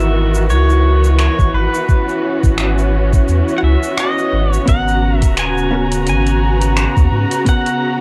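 A swung sixteenth-note groove at 86 BPM in 4/4 drives this smooth, warm sunset chillout fragment, where overdriven finger snaps, metallic hi-hat and shaker meet a knocking electronic kick entering at 1.4 s, a round, up-front sine sub bass anchors the low end, a lush, bowed string section holds rich vibrato chords, a clean pedal steel guitar carries the fingerpicked slide melody with volume swells, and a dark, picked hollow-body jazz guitar joins at 4.7 s as the harmony moves from C#m11 to G#m11, all in a small room with cassette-tape colour on every part but the bass.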